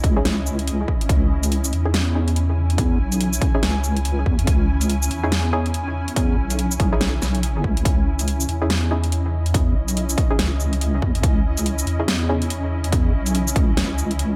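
Heavy and cavernous, this deep dubstep excerpt moves in a swung half-time feel at 142 BPM in C# minor, holding a single C#madd9 chord as a deep, dark wobble bass with chorus sits up front beside a punchy, tape-warm electronic kick, while a layered drum kit adds a huge snare, metallic hats and shaker, a blurred, evolving granular cloud pad sustains mellow chords in its own reverb, and a muted, filtered dub chord stab with chorus and dub echo enters at 0.2 s in the background, all set in a light digital ambience.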